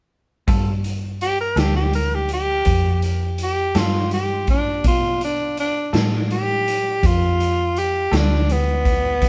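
Swaggering and gritty, this slow blues in 12/8 rolls along at 55 BPM in G mixolydian, cut from a longer piece and resting on a G9 chord. A raw garage drum kit of kick, snare and hi-hat sits up front with a punchy kick, a medium-tuned snare and a saturated, rolled-off top, sounding as if played in a bright stone room. Beneath it, a vintage muted fingered electric bass gives a round, foam-muted, amped low end. A semi-hollow electric guitar plays clean, compressed accompaniment with a scooped, hollow-body tone and harmonic tremolo, sitting low in the mix and stopping at 8.3 seconds. From 1.2 seconds a raspy tenor saxophone takes the solo melody up front, clear with light vibrato and tape echo, as the band plays live together in one room under light reverb.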